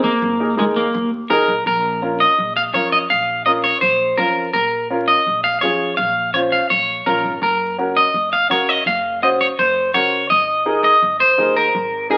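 An up-front electric guitar at the edge of break-up carries the melody in this driving, passionate Latin excerpt in Bb minor at 167 BPM, its twangy, fingered tone bathed in spring reverb. A slightly detuned, vintage upright piano accompanies with a smooth, woody voice, while a dark, thumpy pizzicato upright bass on gut strings sits low in the mix, beneath chords that move from Absus2 to Bbm at 1.7 seconds, then to Gb at 7.4 seconds and back to Absus2 at 10.3 seconds. It is all heard through a moderate studio room and the crackle of a very old 78 rpm record.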